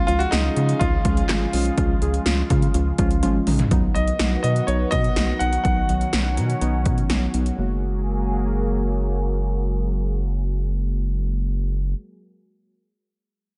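Synth-pop in F# major at 124 BPM, nostalgic and wistful, with a clear grand piano carrying the melody through a low-pass filter and digital delay until 7.1 s, its action noise audible, over a lush, detuned unison pad with chorus and phaser and muted, felt-like synth keys. A rubbery, hollow square bass sits up front, and overdriven 80s electronic pad drums, a punchy kick, gated snare and toms and metallic hats, play a fill at 3.2 s before stopping at 7.6 s, where the harmony moves from C# and B to F#add9. The sound is dark-topped with light reverb, and the clip is cut from a longer piece.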